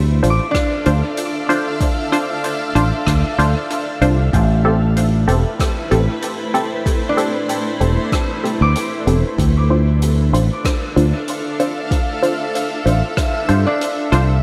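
Hazy and spacious, this excerpt of ambient dub at 95 BPM with a light sixteenth-note swing moves from Dm7 to Am7 and back, as a round, punchy fingered electric bass sits up front beside an overdriven electronic kick, while a muted, phasered dub chord stab and a ringing concert harp arpeggio both trail dub echo, a soft-mallet kit adds faint hi-hat and rim clicks, and a bright, blurred granular cloud pad sustains chords beneath it all.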